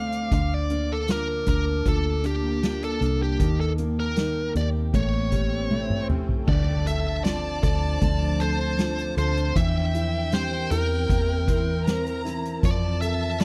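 A distorted, bluesy electric lead guitar carries a longing melody over a felt-muted upright piano with audible action noise, an ethereal chorused pad, a very quiet picked steel-string acoustic guitar playing arpeggios and a round, foam-muted electric bass, joined at 0.1 seconds by a soft-mallet drum kit with dark cymbals and a boomy kick. A background electronic swell begins at 4.8 seconds and leads into an impact at 6.5 seconds, when a lush violin section with vibrato adds a second line in this melancholic pop ballad excerpt with a dry, close 1970s-style studio sound.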